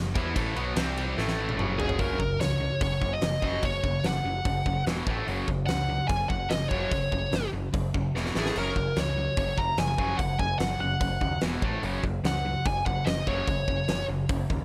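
A dark, high-gain lead guitar sits up front in this energetic, swaggering hard rock excerpt, entering at 1.8 seconds with a distorted, picked melody. A huge arena drum kit, also up front, drives a straight 4/4 at 146 BPM with a punchy kick, a fat snare, hi-hat, ride, splash and toms in a big-room sound, and it rolls through fills at 1.2 and 8.1 seconds. Beneath them, two cranked stack guitars play overdriven, picked riffs in the background: one warm, the other bright. A growling, overdriven electric bass, picked and heard both direct and amped, anchors the low end. The riff cycles through power chords on F#, C, A and E, and a light reverb wraps the mix.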